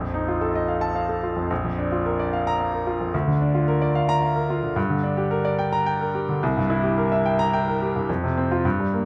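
In a flexible, rubato triple metre, this brief excerpt of a classical virtuoso piano study moves with a brilliant, sparkling character from start to finish. A solo concert grand piano spans from deep bass up into the upper register, its polished, intimate tone placed up front with audible action noise and long sustain under light reverb. The harmony passes from a dominant seventh over a tonic pedal through tonic and minor chords to C7, arriving on an open fifth at 8.1 seconds before the passage breaks off at 9.1 seconds.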